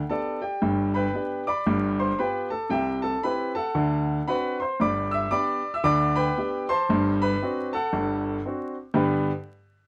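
Swinging and exuberant, this stride piano jazz excerpt cut from a longer piece moves at 115 BPM in 4/4 with a swung eighth-note feel in G major, as a clear, open baby grand plays solo up front from G1 to E6 with long sustain, moving from G through G7, C and D7 back to G by 9.0 seconds, set in a moderate studio room with a dark, warm production and vinyl crackle.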